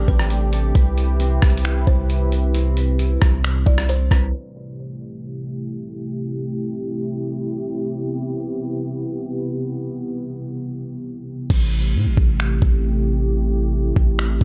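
Atmospheric cloud-rap hip hop in A minor at 134 BPM with a half-time feel, this ethereal, hazy excerpt rests on a dark, detuned analog pad whose sustained Am7 and Cmaj7 chords run the full 14.4 seconds with chorus and sidechain pumping. Through the opening 4.3 seconds, a clean, fingered electric guitar arpeggiates beneath a woody, hollow-sounding kalimba melody, both echoing with delay in the background, while a deep sine 808-style bass and a gritty, compressed boom bap drum kit with a thumpy kick, rim clicks, finger snaps, hi-hat and crash sit up front. A filter sweep carries the pad alone from 4.3 to 11.5 seconds, then bass and drums return with the hi-hats muted, all under a low-pass filter with little reverb.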